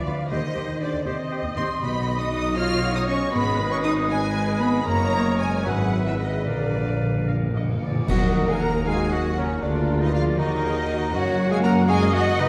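A dark, reverberant, stage-like sound frames this stormy, restless excerpt of a romantic symphonic movement in 6/8, played with flexible rubato. A very quiet, focused violin section carries the melody over a lush, vibrato-rich bed of strings: a second, expressive violin line, violas with portamento, smooth cellos and woody double basses, while airy flutes, a bright solo clarinet, a distant oboe, shadowy French horns, a mellow tuba and a ringing fingerpicked harp fill out the texture. Timpani play a fill at 6.5 seconds, cymbal swell, clash cymbals and concert bass drum sound through the middle, and a roomy trumpet section enters with stabs on a full-band accent at 8.1 seconds.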